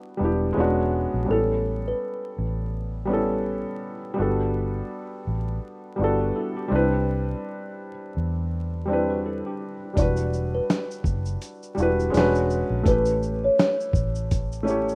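Reflective and hazy, this lo-fi hip hop fragment of a longer piece drifts at 83 BPM in 4/4 with a gentle 16th-note swing, moving through jazzy chords such as Em9, E13, A9, Gmaj9 and Cmaj9. A soft, felt-muted upright piano carries the accompaniment throughout, intimate and up front with audible action noise, dulled further by cassette tape and a low-pass filter. Beneath it, a vintage muted fingered electric bass sits dark, round and punchy, while a woody kalimba with a hollow-box, fingertip pluck states the melody briefly at the start. At 6.2 seconds a worn, slightly out-of-tune tine electric piano adds a faint second line in the background, filtered and trailed by analog delay. At 10.0 seconds a gritty, compressed sampler-style drum kit with a thumpy kick, medium-tuned snare, hi-hat and shaker enters up front, the kalimba returns alongside it, and the felt piano closes with a short fill at 14.3 seconds. 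The rough home-demo mix is dry and dusted with vinyl crackle.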